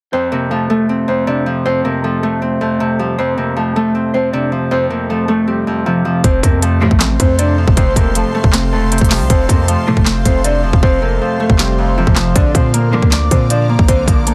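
Triumphant yet dreamy half-time trap in F major at 157 BPM, where a dark, clean electric guitar melody with phaser and digital delay floats over fingerpicked, ringing Celtic harp before a trap kit with a hard-clipped kick and punchy, heavy 808 bass crash in at 6.2 seconds, joined by an airy, evolving pad and brief bowed string stabs in the background, all within a dense, heavily limited mix that has little reverb.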